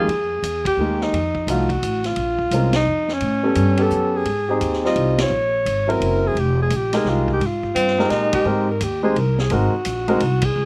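A breathy alto saxophone carries the moody, cool melody up front with vibrato and a smooth top in this short jazz excerpt, a small-group swing and bop piece in F minor at 172 BPM in 3/4, while a bright tenor saxophone with scooped notes adds a brief second line around 7.8 seconds. A warm, intimate concert grand piano with audible action noise plays accompaniment over woody pizzicato upright bass, and a vintage drum kit with a high-tuned snare, punchy kick and rolled-off top sits lower in the mix. The band hits accents at several points, including 0.6 and 5.1 seconds, and the sound is dry and close, with little reverb.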